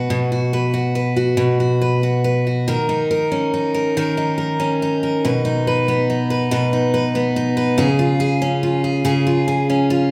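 Heartfelt and tender, this short pop passage, cut from a longer piece, moves in an unhurried 6/8 with a straight feel. A picked steel-string acoustic guitar plays alone throughout, its dreadnought body sounding bright and full with the fresh ring of new strings, set up front in the mix. Small finger squeaks add a close, human touch as it moves between B2 and B4. The harmony opens on B5, shifts to D#5 as a new section begins at 2.7 seconds, then settles through B and C#. A generous large-studio reverb surrounds the guitar, giving the sense of a band playing live together in one room.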